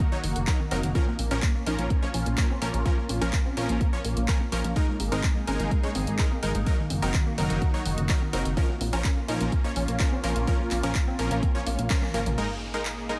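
A straight pulse from an up-front deep electronic kick and a deep house kit with dark hats, handclaps, toms and crash drives this bittersweet, expansive progressive house excerpt, where sidechain pumping breathes through a lush background pad with chorus and phaser, a soft round arpeggiated pluck under a filter sweep and delay, bright detuned supersaw stabs, a punchy, funky analog bass, very quiet tape-warm congas, a drum fill near 11.7 seconds and a downlifter closing from 12.5 seconds.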